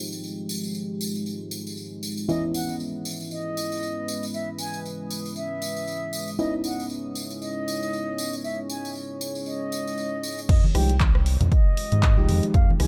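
A swung 117 BPM deep house groove in 4/4 opens with a jingly, dry tambourine up front, while a moody, detuned ambient pad holds sustained Fm9 chords under a filter sweep and a pumping sidechain. A soft FM electric piano plays stabs beside it, its chorus and vintage 12-bit sampler grit adding a dusky, lo-fi edge. At 2.3 seconds an airy, distant concert flute enters with a mellow melody through tape echo as the harmony shifts to Dbm9. At 10.5 seconds the drop arrives back on Fm9: a punchy, overdriven electronic kick sits up front with a round, deep analog bass, joined by an overdriven deep house kit of crash, handclaps, hi-hat and rim click with the cymbals, hats and snare filtered dark, plus very quiet, bright congas. Light reverb wraps this hypnotic, warm excerpt from a longer piece.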